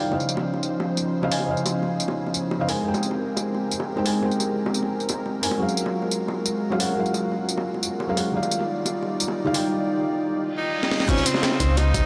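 A felt-muted upright piano, soft and dark with audible action noise, opens this dreamy, uplifting liquid drum and bass excerpt at 175 BPM in Db lydian alongside a detuned sawtooth pad pumping under sidechain, as background bongos and a gritty, tape-warm breakbeat kit with low-pass-filtered hats, snare and cymbals carry it through Dbmaj9, Abmaj9, Gbmaj9 and Ebmaj9. A faint reverse cymbal rises from 10.5 s, a bright, vibrato-laden tenor saxophone enters at 10.6 s, and a drum fill at 10.8 s ushers in a thumpy electronic kick and a very quiet crunchy kit at 11.1 s, with a deep sine-and-triangle sub bass arriving at 11.6 s, all steeped in a huge eight-second ambient reverb.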